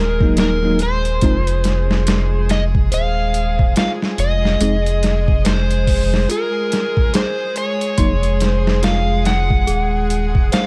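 Cinematic and smoky, this trip hop excerpt moves at a slow 71 BPM in F phrygian, its sixteenths swung and its surface dusted with vinyl crackle. A gritty, pitched-down boom bap drum kit sits up front with a thumpy kick, medium-tuned snare and hi-hat in a small room, while a round, deep analog bass thickened by tube saturation anchors the low end. An overdriven slide guitar carries the melody with a dark, fingered tone and tape echo, over sustained chords from an earthy chamber string section with light vibrato. A bell-like tine electric piano adds clean accompaniment with tremolo and tape echo until about 8.1 seconds, and a delicate celesta enters at 1.2 seconds with sweet arpeggios in the background. Beneath it all, a very quiet, tense, string-like drone holds a single note, as the harmony moves from Ebm to Fm7 and back to Ebm in a dry, close mix.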